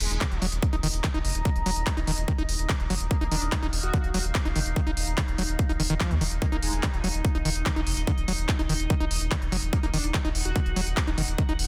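A punchy, up-front electronic kick drives this intense, alien psychedelic trance excerpt at 145 BPM in straight 4/4, set in Eb harmonic minor. Beneath it, a round, deep analog bass with a sine-like tone holds the low end from Eb1 to Eb2, while a techno kit adds smooth hi-hats and handclaps with a tape-warm, small-room character. A squelchy, gritty acid bass riff sits in the background, distorted and resonant, with filter sweeps, dub echo and sidechain pumping. From 0.4 seconds an overtone-sweeping drone sustains chords through chorus, phaser and its own reverb. A metallic FM wobble bass surfaces in short bursts, most fully between 3.1 and 7.0 seconds, coloured by cassette-tape saturation and dub echo. The mix is dry, dense and heavily limited, with a loud modern finish.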